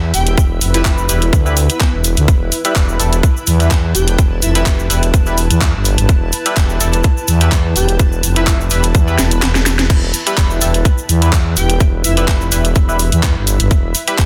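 Swaggering and bouncy, this bass house excerpt struts at 126 BPM in E phrygian with a light sixteenth-note swing, anchored by a tight, overdriven electronic kick and a thick, growling FM bass that pumps against it, while a garage drum kit with a cracking snare, handclaps, hi-hat and crash, plus a grainy cabasa in the background, fills out the groove. Above, a nasal, band-passed chord stab adds phaser and dub echo, a cloudy, evolving granular pad drifts behind, and an airy, dreamy lead with chorus and echo floats in the background, entering at 0.1 seconds and returning at 7.8 seconds. A drum fill arrives at 9.2 seconds as the kick briefly drops out, all within a dense, heavily limited modern master.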